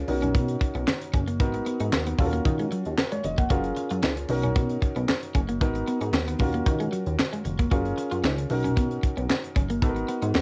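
A grand piano with long sustain and a glossy, chorused synth bass open this smooth, feel-good early-eighties boogie funk clip, cycling through Bmaj9, G#m7, D#m7 and F#maj7 chords. A tight, up-front drum kit with a high-tuned snare, hi-hat and handclaps joins almost at once, with very quiet low-tuned congas beneath and a compressed, slightly broken-up electric guitar riff colored by analog chorus and cassette tape. The home cassette recording has light reverb and a soft, dulled top end.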